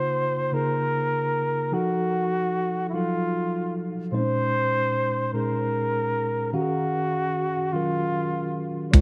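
A breathy, whispered flugelhorn sings a tender solo melody over a mellow tine electric piano, giving this excerpt of a slow six-eight R&B piece an intimate, jazz-tinged warmth as the chords move through rich ninth and eleventh colours. The horn carries a gentle vibrato and soft attack, while the piano sounds clean through its built-in speakers, both set in a lush hall reverb with a bright 1980s-style digital sheen. At 8.9 seconds, a round, deep analog bass and a gritty, compressed sampler-style drum kit with a thumpy kick and hi-hat arrive up front just as the clip is cut off.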